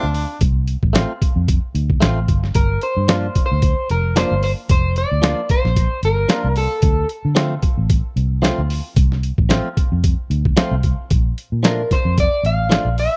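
A slightly broken-up, lo-fi electric guitar through a small old amp carries the melody, entering at 2.6 s with a subtle chorus and returning at 11.7 s after a pause, its picked lines sitting up front. This is a smoky, soulful straight-eighth soul blues cut from a longer piece, moving at 112 BPM in 4/4 with a light sixteenth-note swing in D minor. Beneath it, a sampler-style boom bap kit, compressed, pitched down and gritty, pairs a thumpy kick and medium-tuned snare with hi-hat for a tape-warm pulse. A vintage muted fingered bass, dark, round and foam-muted, holds the low end up front. A bright, twangy clean guitar, recorded direct, adds picked stabs with spring reverb as the harmony moves from Dm7 to Gm7, back to Dm7 and on to Bbmaj7. The whole recording has a dry, close 1970s-style studio sound.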